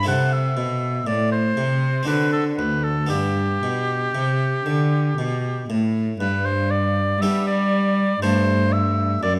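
A moderate recital-hall reverb surrounds this short passage from a longer baroque-style classical sonata movement in G major, tuned to A4 = 444 Hz, flowing and dance-like at 60 BPM in 3/4 with a straight feel. A warm solo oboe with vibrato carries the melody up front, while a single bowed cello, rich and focused with a smooth top, anchors the bass just as prominently, and a round, plucked harpsichord supplies the continuo accompaniment. The three parts sound together from the start, the oboe through 9.3 seconds, as the harmony moves from Am through D7 to G and settles on Am7/G at 8.2 seconds.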